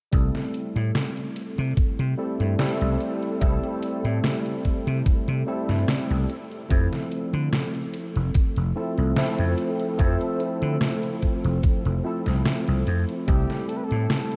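A slow 73 BPM groove in 4/4 with a light 16th-note swing carries this dreamy, faded vaporwave fragment in C major, cut from a longer piece. An electronic kick drum sits up front with a thumpy, tape-warm weight, joined by a detuned 8-bit digital drum machine supplying hi-hat and a medium-tuned snare, both re-recorded in a large room. A vintage slap bass, growly and punchy through tube saturation, anchors the harmony as it moves from C6 to Fmaj7 at 6.3 seconds and back to C6. Above it, a bright, barky tine electric piano comps through a combo amp with light overdrive, ensemble chorus and a diffuse ambient delay. At 13.3 seconds a smooth-topped flugelhorn enters briefly for the melody, soft and low in the balance. The whole mix is soaked in a huge ambient reverb with a cassette-tape haze that deepens its nostalgic blur.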